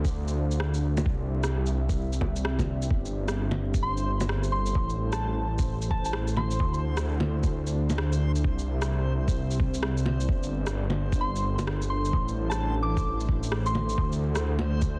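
A deep, warbling pad and a menacing, saturated detuned saw bass open this rainy, wistful future garage excerpt at 130 BPM in G dorian, alongside a muffled, overdriven kick up front and tape-warm shaker, rim click and bongos with a 63% swing, while a reversed, granular texture drifts in at 3.9 seconds and a soft, pure FM bell with chorus and tape echo sings at 3.8 and 11.2 seconds over a dense, heavily limited master dusted with vinyl crackle.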